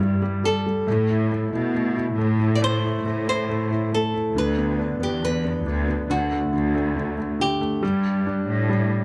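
Tender and hopeful, this excerpt from a longer pop ballad moves at a slow 69 BPM in G major, opening on a lush bowed cello section carrying the bass with smooth vibrato beneath an intimate concert grand piano whose audible action noise and deep low end give the accompaniment a polished, present feel. From 0.5 seconds a boxy, fingerpicked flamenco guitar takes the melody up front, its acoustic tone set against the strings and piano. Light reverb lends the whole a small-room ambience as the chords pass from Emadd11/G through A5 and D to rest on G5.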